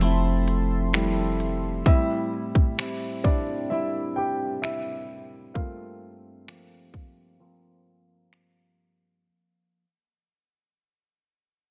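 Dreamy and romantic, this short contemporary R&B fragment drifts at 65 BPM in a straight 4/4, cut from a longer piece and fading out across its full 9.2 seconds. A grand piano with an intimate, natural tone and audible action noise takes a solo up front, low-pass filtered and moving through Fmaj7, Am7 and Gm11 as a filter sweep runs under the whole passage. A clean, picked electric guitar, bright and twangy, plays compressed arpeggios through its own low-pass filter and digital delay, lasting until 9.8 seconds. For the opening 1.8 seconds, a chorused pulse-width pad adds a shimmering, retro, detuned layer of sustained chords, sounding alongside a round, sine-like 808-style bass on a deep, dark F1. A trap drum kit sits forward with a hard-clipped kick, crisp hi-hats and finger snaps, before a break opens at 7.4 seconds, all wrapped in a digital ambience.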